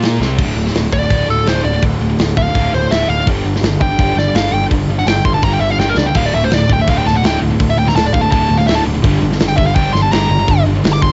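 A dry home recording on cassette, its top end capped at 7.8 kHz, carries this relentless, epic heavy metal excerpt in D minor at 166 BPM, cut from a longer piece. Up front, a tight acoustic kit with a medium-tuned snare and rolled-off top drives straight 4/4 with crash, hi-hat, kick and snare, firing a fill at 0.2 seconds and another at 5.8 seconds. A punchy, overdriven fuzz bass sits beside it, while three rhythm guitars pile riffs into the background: a double-tracked, compressed fuzz guitar, a bright high-gain guitar, and a dark, sludgy overdriven guitar that drops out after the opening and returns at 6.2 seconds. From 0.9 seconds a nasal lead guitar with a parked wah takes a soloing melody up front, climbing as high as D6. The harmony moves through C5, D5 and G5 power chords before settling on G minor near the end.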